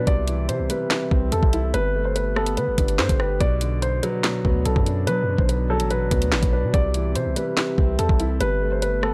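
Drill hip hop at 144 BPM in a half-time feel, this tense, ominous excerpt in B phrygian sets a dark, mellow concert grand piano melody with digital delay and a low-pass filter over a second filtered, boxy piano accompaniment with long sustain, an ethereal, glassy glass harmonica holding sustained chords in the background, a heavy, aggressive distorted 808-style bass with a noise layer up front, and an electronic drill kit entering at 0.1 seconds with knocking kick, sharp snare, rim clicks, handclaps and tape-warm hi-hats, all moving through C, Gadd9 and Bm in a dark studio-reverb production.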